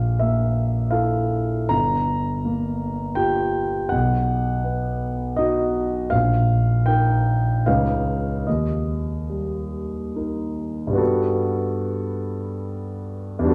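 A clear concert grand piano sits up front in this short cut from a longer impressionist solo piece, its deep bass and long sustain ringing out across a range from G1 to Bb5. In a hazy, luminous mood and a rubato 3/4 at roughly 69-84 BPM, the harmony drifts through Gm7, B, Bbsus4, Db9 and Eb before a new passage opens on Gmaj9 at 11.0 seconds. The natural piano tone is wrapped in a wet recital hall reverb that lingers around every chord.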